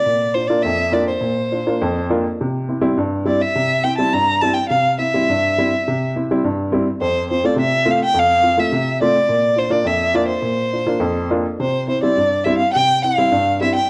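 A dark, smooth solo violin leads this bittersweet yet festive klezmer passage, its bowed line sung evenly with vibrato and placed up front. Beneath it, a woody upright piano with short sustain plays accompaniment over a straight 4/4 pulse at 104 BPM, moving through Bb, C and F. Close, detailed microphones catch both players within a moderate recital hall reverb, in a brief cut from a longer piece.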